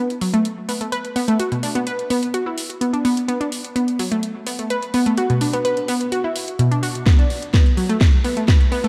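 A round, detuned analog pluck opens this progressive house build-up in B minor at 127 BPM, its bright sawtooth-and-square arpeggios pumping against the sidechain and trailing chorus and digital delay through a lush hall reverb. A house drum kit of cracking snare and metallic hats drives underneath at a lower level, and a punchy, up-front electronic kick enters at 7.1 seconds for a drum fill. The dark production gives the cut an expansive, driving mood.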